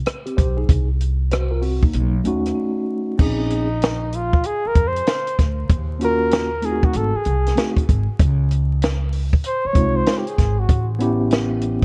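Vinyl crackle and a dark, dry, close production frame this smoky, cool jazz-hop excerpt at 96 BPM, where a compact cocktail drum kit with vintage 12-bit sampler grit swings its 16ths with a punchy kick, high-tuned snare, rim clicks and dark cymbals. A mellow tine electric piano heard through its built-in speakers lays down extended chords such as a rootless Fm9 and Bbm11, while a woody, thumpy upright bass on gut strings plays pizzicato underneath. After a break at 2.6 seconds, a breathy flugelhorn with vibrato and a smooth top enters at 3.2 seconds for a jazz solo through analog delay, lasting until 10.9 seconds over chords that include Ab7b9 and Dbmaj7.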